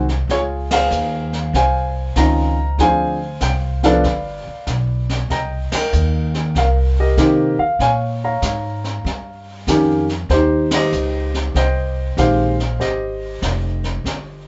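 A polished, present baby grand piano carries the melody in this swinging, sophisticated jazz piano trio excerpt at 96 BPM in Ab major, over a woody pizzicato upright bass and a distant, roomy brushed drum kit with dark cymbals and a boomy kick, while the band hits accents together at 0.6, 5.6 and 10.6 seconds as the chords travel from Dbmaj9 to Abmaj7 in a moderate studio reverb.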